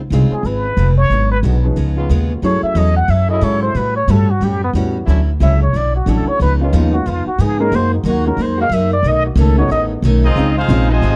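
Brassy and swinging, this jazz excerpt moves at 182 BPM in 4/4. A woody pizzicato upright bass sits up front, with a picked steel-string acoustic guitar and a natural-sounding baby grand piano accompanying alongside a clear trombone section that holds soft-attack sustained chords. A plunger-muted trumpet carries the melody as a breathy, wah-wah solo with vibrato; at 10.2 s a tight, smooth-topped trumpet section takes over the melody while a nasal, straight-muted trombone section plays a second line in the background, all captured in a dry, close small-room sound with a 1970s studio feel.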